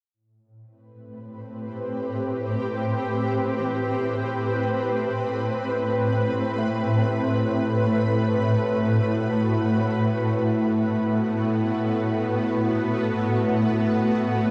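Ambient music in free time and A dorian, serene and reflective, where a bright, shimmering pad with an octave-up sparkle and granular texture sustains an Am7 chord from 1.1 seconds, a mellow, warbling sawtooth drone with chorus and cassette tape colour settles in behind it at 2.5 seconds, and a very quiet, woody kalimba rings soft arpeggios from 3.6 to 9.9 seconds, all bathed in a lush hall reverb on a home cassette recording cut from a longer piece.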